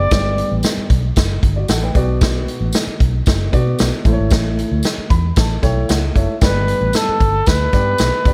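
Joyful and danceable, this short cut from an uptempo 1960s-style soul piece moves in a straight 4/4 over a G, Bm, A chord cycle that returns to G. A breathy trumpet carries the melody with vibrato, scooped notes and a soft, whispered attack, sounding briefly at the very start and then returning from 6.4 seconds to the end. Beneath it, a dark upright piano supplies mellow, woody accompaniment with long sustain throughout, and it steps forward with a fill between 4.8 and 6.4 seconds. A vintage foam-muted fingered electric bass gives a round, amped low end, while a swinging big-band drum kit sits up front with hi-hat, a punchy kick and a medium-tuned snare in a big, natural room. A jingly tambourine shimmers distantly in the background, and a studio ambience surrounds the ensemble.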